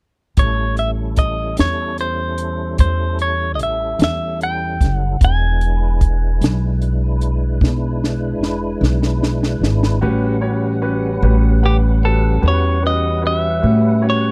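Laid-back and soulful, this slow blues excerpt moves at 50 BPM in a straight 12/8 feel, centered on A mixolydian and opening on an A7 chord before shifting to E7. A clean, fingered electric guitar carries the melody up front with a compressed sheen, while a tonewheel organ holds sustained chords beneath it, its slow rotary speaker, chorus vibrato and audible key click adding a gentle shimmer. A woody, dark upright bass played pizzicato sits close in the mix alongside a compact cocktail drum kit, whose high-tuned snare, punchy kick and hi-hat give the groove a dry, intimate snap. The drums close out their part with a fill from 7.6 to 10.0 seconds, after which a clear concert grand piano with deep bass joins as accompaniment, the harmony settling on A13. The whole take has the dry, close sound of a 1970s-style studio.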